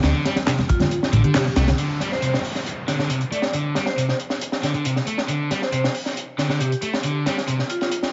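Vinyl crackle and light reverb colour this short, dusky cut from a longer piece, its top end capped at 7.7 kHz. It is a gritty, swaggering breakbeat track in D minor at 137 BPM, in a straight 4/4 that opens on a D5 chord before the harmony gives way to chordless stretches. Up front, a saturated acoustic break kit with a high-tuned snare and tight kick sounds dark and rolled-off, its kick briefly falling away around a band accent at 1.3 seconds. A very quiet electronic kit adds layered handclaps and bright hats, while close, hard-hand congas sit in the background through the opening section. A round, punchy hollow-body bass and an overdriven, filtered guitar riff drive that opening together, the bass stopping at 1.7 seconds while the guitar carries on. Behind them, a metallic vibraphone with fast motor vibrato rings through telephone-like filtering, 12-bit sampler grit and tape echo, and an electronic downlifter drifts through the middle of the cut.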